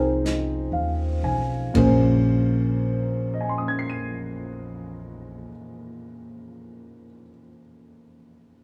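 A smoky, melancholic jazz ballad in B-flat minor, this brief excerpt from a longer piece moves at a slow 39 BPM in 4/4 with a swung eighth-note feel, slowing down over its opening moments. A smooth, vintage grand piano sits up front as the accompaniment, spanning a broad range and carrying on until 8.6 seconds, after the other parts have fallen away. Beneath it, a woody, growly upright bass plucks low notes on steel strings until 5.5 seconds. A jazz kit played with brushes makes only a short appearance, from 0.3 to 2.5 seconds, with dark cymbals, a medium-tuned snare and a boomy kick. The harmony shifts from an F7sus4 to a Bbm9 at 1.8 seconds. Wet club reverb places the players a little further back in a small room.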